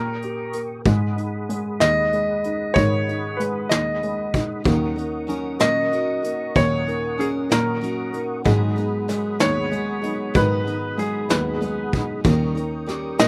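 A six-eight pop ballad in G# minor at 63 BPM, dramatic and melancholic, where a clear, polished grand piano carries the melody with a slapback echo over a dark, woody upright piano with audible action noise and a slightly detuned character. A rich, bowed cello holds the bass with smooth vibrato, a soft, flute-like tonewheel organ sustains chords through chorus vibrato and a slow rotary speaker, and a brushed drum kit with a punchy kick sits up front from 0.2 seconds. A full-bodied picked steel-string acoustic guitar adds arpeggios from 4.6 seconds, all in a dry sound over chords moving between G#m7, D#m7 and D#7.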